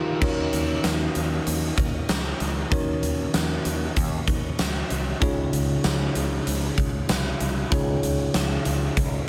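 A straight 4/4 pulse at 96 BPM drives this glossy, romantic slice of 1980s-style pop, opening on a band accent, where a huge arena drum kit with a fat snare, punchy kick, bright cymbals, hi-hat and tambourine sits up front in gated reverb, a fretless electric bass thickened by ensemble chorus carries the low end, and a clean, bell-like tine electric piano bathed in shimmer reverb moves from Ebm7 to Dbadd9 at 5.2 seconds, framed by a lush hall ambience.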